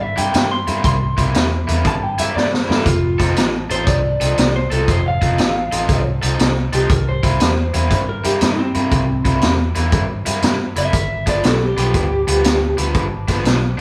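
A swinging 4/4 shuffle at 119 BPM drives this soulful, rollicking electric blues excerpt in C mixolydian, moving from C7 to F7 and back, then to G7, with a vintage drum kit up front: a punchy kick, a high-tuned snare and hi-hat, and a short fill at 2.4 seconds. A dark, round, foam-muted fingered bass anchors the low end while a bright, overdriven garage guitar picks a raw riff with spring reverb. Over them, a picked lead guitar through a small old amp sings the melody with a slightly broken-up, compressed, lo-fi tone and its own spring reverb, dropping out at 12.8 seconds, all captured as a band playing live in one room with moderate studio reverb.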